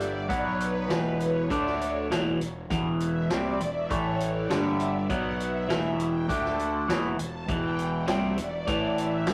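A rough rehearsal-room recording with tube saturation and a moderate small-room reverb gives this brief psychedelic rock excerpt a hypnotic, mysterious air in a straight 4/4. A twangy, clean, picked electric guitar sits up front throughout, playing a riff through a phaser. Beneath it, a dark, round fuzz bass with overdrive anchors the low end. A vintage acoustic drum kit with a punchy kick, medium-tuned snare and hi-hat keeps time with a mid-forward, rolled-off character. A bright, sawtooth string machine voiced as violas holds slow-attack, long-release chords with ensemble chorus and carries the featured solo from 0.0 to 9.3 seconds, as the harmony moves through power chords around a returning E minor.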